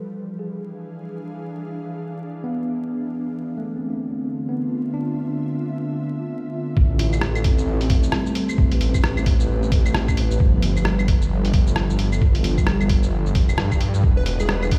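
A menacing, detuned saw bass arrives up front at 6.8 seconds, its saturated sawtooth tone evolving through a filter swell, joined at the same moment by a muffled, thumpy, pitched-down kick. This cut from a longer future garage piece moves at 132 BPM in 4/4 with a 60% swing on the sixteenths, sitting in A minor with a ghostly, nocturnal mood. From the start, an ethereal, airy pad holds sustained chords through ensemble chorus and its own reverb, and a moment later a clean tine electric piano enters to accompany it with 12-bit sampler grit and digital delay; pad, piano and bass all breathe with sidechain pumping. A compressed, tape-warm lo-fi kit adds claves, hi-hat, rim click and shaker just after the kick, and the harmony drifts from E7b9 through Dm9, Am9 and G9 before returning to E7b9. Near the close, a faint reversed granular swell glimmers in the background, and at 14.2 seconds a punchy, catchy square-and-saw lead flashes a brief figure through cassette tape and tape echo. 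The mix plays as if through a big sound system in a bare room, with large studio reverb and vinyl crackle around it.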